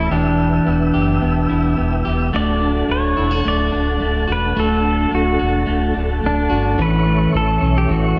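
This dreamy, blissful dream pop excerpt opens with everything already sounding together: a slightly broken-up electric guitar plays dark, fingered arpeggios up front, coloured by subtle chorus and tape echo. Beside it, a pedal steel guitar carries the melody in a clean, compressed tone, played with fingerpicks and slide, with volume swells and its own tape echo. Underneath, a soft, flute-like tonewheel organ holds sustained chords, shimmering through chorus vibrato and a fast rotary speaker. A deep sine sub bass with an added octave anchors the low end, full and sustained with a quick attack, sitting forward in the mix. The harmony moves from Em to D at 2.3 seconds and on to A at 6.8 seconds, all within a moderate, lush hall reverb over a small room ambience.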